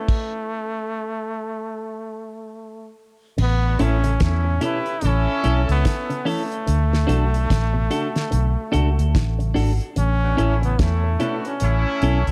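Roots reggae at a laid-back, uplifting 73 BPM in A major, this short cut opens with a brilliant, close-miked solo trombone carrying the melody through tape echo over a damped 70s drum kit with a fat snare and tight kick. At 3.4 seconds a round, foam-muted vintage bass sits up front, joined by a very quiet envelope-filtered guitar playing arpeggios, a tight horn section with light vibrato on a second line, and a twangy clean guitar accompaniment soaked in spring reverb and tape echo. The chords move from A to D and back to A, all within a dark, small-room production.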